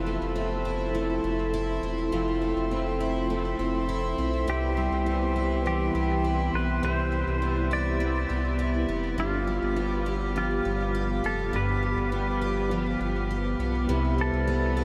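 Ethereal and dreamy, this 102 BPM dream pop excerpt in C major drifts through Fmaj7, Cmaj7 and G7 on a round sub bass and shimmering, octave-doubled twelve-string arpeggios touched with subtle chorus and delay, while a slightly broken-up electric guitar through a small old amp pulses with harmonic tremolo and ensemble chorus in the background, a distant woodwind section holds soft chords with light vibrato, and a clean, twangy lap steel enters at 4.5 s with a slide melody in lush chorus and delay, all soaked in a huge ambient reverb.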